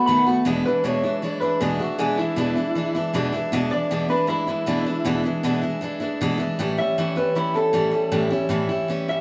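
Rock at 156 BPM in 4/4 with a straight feel, this short excerpt from a longer piece sounds upbeat and rollicking, sitting in E mixolydian. An electric guitar through a small old amp carries the melody from E4 to B5, its tone twangy and slightly broken-up. Beneath it, a picked steel-string acoustic guitar with a full-bodied dreadnought sound plays the accompaniment from E2 to F#4, placed up front in the mix. Both guitars play throughout, and the harmony rests on E7 from 0.5 seconds before moving to A7 at 6.6 seconds. The band was captured playing live in one room, with a wet stone-room reverb giving the sound a resonant space.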